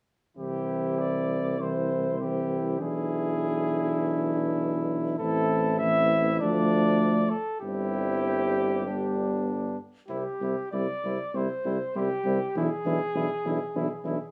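At 0.4 s a brass quintet enters together in a noble, warm classical passage cut from a longer piece. The cornet carries the melody up front, its mellow tone touched with light vibrato and a smooth top. Beneath it, a dark trumpet holds a second line, while a French horn with a similarly rounded, vibrato-shaded sound sits in the background and a close-miked trombone fills out the accompaniment. A tuba anchors the bass with a warm, vintage tone and its own vibrato. The harmony moves from C through E7/B, Am and Dm to G before returning to C, and light studio reverb surrounds the ensemble.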